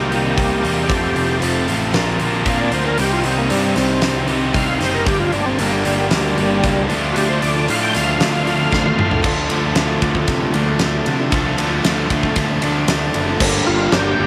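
Heard in light small-room ambience, this gritty, driving classic rock excerpt opens in half time, with an overdriven tonewheel organ taking a thick solo through a slow rotary speaker and chorus vibrato until about 9.2 seconds, capped by a drum fill from 8.7 seconds. Bright overdriven electric guitar and a sludgy guitar in the background play riffs over a fuzz picked electric bass and a huge arena drum kit with a fat snare and punchy kick. From 0.9 seconds, a very quiet picked steel-string acoustic guitar and a lush, mellow string machine holding sustained chords fill in, and in the closing moments a boxy grand piano, a metallic cowbell and an octave-fuzz lead guitar second line join.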